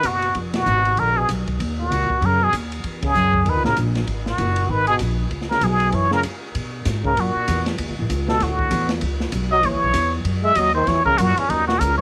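A dry, close-sounding excerpt of moody, late-night small-group swing and bop, with the plunger-muted trumpet up front carrying the melody in a brilliant, wah-wah voice full of vibrato and scooped notes. Beneath it, a warm trombone sings a second line with its own vibrato and scoops, while the woody pizzicato upright bass sits forward and the open drum kit, heard in a small room, stays dark and smooth with dusky cymbals, a boomy kick and a rolled-off top. The band hits accents at 0.5 and 3.0 seconds, and a brief break at 6.2 seconds leads into the second section.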